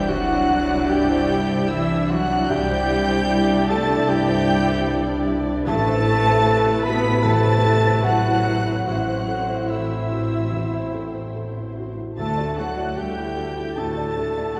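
Rubato at 75 BPM in 4/4, this tender, moving cinematic fragment in C lydian sets a distant, vibrato-rich high violin melody over a second violin line, pure flute and mellow cor anglais, with muted felt piano (its action noise audible), smooth violas, dark French horns holding chords, lush cellos and focused double basses, as barely audible hard-mallet timpani sound only in the first 0.5 seconds, chords move from Cadd9 to Amadd9 to Dadd9, and the whole is heard from further back in a wet concert hall.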